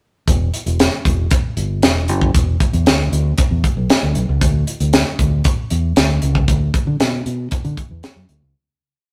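A fingered electric bass sits up front with a bright, fat syncopated boogie line, full of muted ghost notes and slides, ranging from E1 to D3 in E dorian. Alongside it from the start, a tight acoustic funk kit, mid-forward with a high-tuned snare, tight kick and hi-hat, drives a mid-tempo boogie beat at 116 BPM in straight 4/4. This whole, brief early-eighties boogie funk piece feels late-night and slick, a breakdown with a moderate stone-room reverb and a rough rehearsal-room sound that fades out from 6.5 to 8.6 seconds.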